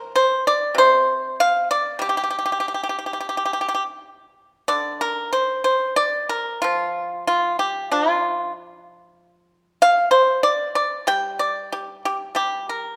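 Heard through a moderate recital-hall reverb, this short fragment of Chinese traditional music presents a solo pipa, placed up front and played with fingerpicks, whose mellow, percussive, dry tone moves in a free rubato over 4/4 with a contemplative, longing mood, turning to a new section at 4.7 s before breaking off at 13.0 s.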